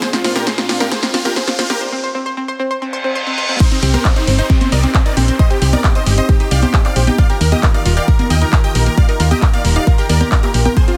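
A dense, heavily limited modern master in a digital ambience carries this bittersweet, driving uplifting trance excerpt, where a huge, euphoric supersaw lead with sidechain pumping and digital delay sings the melody over a very quiet, mellow plucky unison lead with vibrato. Beneath them, an evolving filtered supersaw swell holds sustained chords in the background, and a round analog pluck with subtle chorus and tape echo spins arpeggios that get a filter sweep during the build-up. A punchy, up-front electronic kick and a house kit of congas, crash, handclaps, bright hats and snare drive the groove, background risers, reverse cymbal and downlifter mark the build and break, and at the drop at 3.6 seconds a dark, solid FM bass enters at 3.8 seconds.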